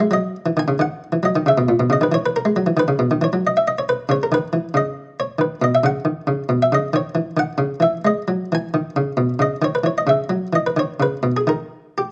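In a flowing, rubato 12/8 lilt at 90 dotted-quarter beats per minute, this grave baroque-style suite movement, cut from a longer piece, features a solo buff-stop harpsichord in Flemish style, muted, plucked and lute-like, sitting up front from A#2 to G#5 as it moves from A#dim through B, C#madd9 and C#m11 to B69, all in a moderate large-studio reverb of 1.2 seconds and colored by the warbly pitch drift of worn old cassette tape.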